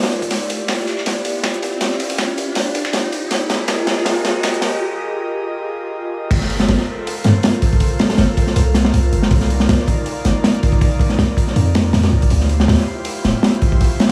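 Lightly reverberant and dark, this atmospheric drum and bass and jungle excerpt opens with an airy, breathy pad holding soft, detuned chords under a chorus shimmer while a filter sweeps across it through the build-up. A crunchy breakbeat kit sits up front throughout, its punchy kick, medium-tuned snare, hi-hat and crash sounding saturated and gritty with a rolled-off top. From 0.1 seconds, an electronic riser climbs alongside a dusty, compressed soul sampler-style kit of hi-hat and snare tucked in the background, while a drum fill drives toward a short break at 4.8 seconds. The drop lands at 6.3 seconds, where a deep, mellow 808-style bass enters up front with long, decaying sine notes beneath the moody minor eleventh chords.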